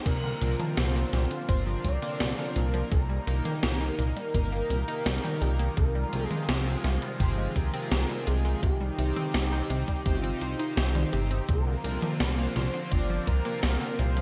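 Synthwave at 84 BPM in a straight 4/4, nocturnal and nostalgic, this brief cut from a longer piece rides a chord cycle of Bbadd9/C, Eb/C, Fmadd9/C and Cm over a glossy, up-front chorused synth bass, a thumpy sampler-style electronic kick and a gated 80s digital drum machine whose snare, hi-hat, toms and crash carry gated reverb. A thick, bold unison lead with vibrato, 12-bit sampler grit, lush chorus and delay sings the melody, while a smooth, detuned analog pad, a round, ring-modulated analog pluck playing arpeggios and a bright chorused polysynth adding stabs from 0.4 s sit in the background, all three bathed in shimmer reverb. The production is bright and 1980s-style, set in a lush hall reverb.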